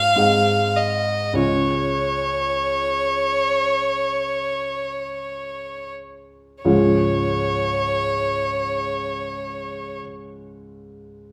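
Set in a reverberant recital hall, this tender romantic classical excerpt in Db major, tuned to A4 = 437 Hz, moves in free time as a close, rich-toned bowed violin sings a smooth, even melody with vibrato over a clear, intimate grand piano accompaniment whose action noise is audible, easing into a slowdown before the second section begins at 6.7 seconds, with the violin falling silent at 10.0 seconds and the piano carrying on alone until 11.3 seconds.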